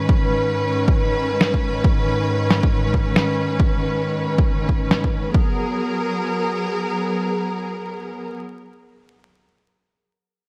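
Swung sixteenths at 137 BPM in 4/4 drive this rainy, ghostly future garage piece in G# minor, tuned to A4 = 437 Hz. A punchy, overdriven, layered electronic kick sits up front from the start, joined at 1.4 s by a muffled, pitched-down sampler snare with a tape-warm tone. Both drums drop out by 5.5 s, while a lush, bowed string ensemble with vibrato holds sustained chords throughout, roughened by 12-bit sampler grit and sidechain pumping. The harmony moves from Badd9 over G# to G#m9 at 5.3 s, all set in light digital reverb and vinyl crackle.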